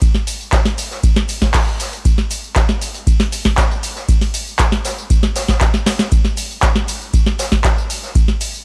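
Cut from a longer piece, this gritty, driving house clip sits in a small room with a tape-saturated analog sheen, moving at 118 BPM in straight 4/4. A deep analog electronic kick sits up front beside a booming analog drum machine with a tonal snare, handclaps, metallic hats, ride cymbal and tambourine, its snare, clap and hats carrying a short room. Behind them, a street-band acoustic kit with a medium-tuned snare, hi-hat and shaker has a mid-forward, rolled-off tone, its hats and percussion pumping from sidechain, and a drum fill arrives at 5.7 seconds.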